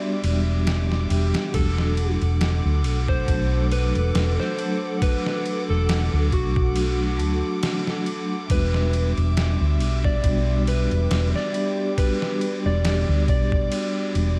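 Melancholic and dark, this slow 69 BPM trip hop excerpt in E minor sets a slightly broken-up electric slide guitar melody, carrying 12-bit sampler grit and tape echo, over mellow soft-mallet vibraphone with harmonic tremolo and soft-attack sul tasto chamber strings that share that lo-fi grit, while a round, up-front hollow-body bass and a compressed, pitched-down sampler drum kit with thumpy kick, snare and ride enter at 0.2 seconds beneath a dry, shadowy mix that moves from Em7 to D/E and back.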